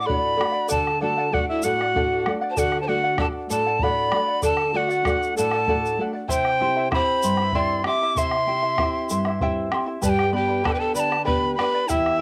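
Wistful and earthy, this short passage of Andean folk in 6/8 sets a bright, reedy quena with vibrato up front on the melody, joined by a breathy pan flute with a soft, chiffy attack on a second line, over fingerpicked shimmering charango with double strings and a dark, full-bodied nylon-string guitar. A round, band-limited bombo enters at 0.1 seconds and a grainy tube shaker at 0.7 seconds, as the harmony moves from D to C to G. The melodic and string parts carry a cassette-tape character, and the whole sits in light reverb with the intimate feel of a home recording.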